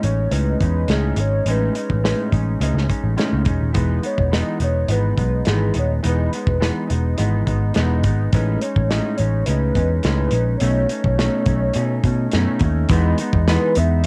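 A warbling, detuned lead synth carries the melody through tremolo, subtle chorus and tape echo, over a twangy, fingered clean electric guitar with analog chorus and a drifting cassette wobble, a dark, round, foam-muted picked bass and a loose, small-room indie kit with a tight kick and rolled-off top, all starting together from the first second. The sunny, nostalgic indie pop moves in a straight 4/4 through lush chords such as Amaj9#11, Emaj7 and B9, with the bass sitting punchy and up front. Light reverb and a home cassette recording give it a hazy, intimate feel, and a brief new section arrives at 12.9 seconds before this excerpt from a longer piece cuts off.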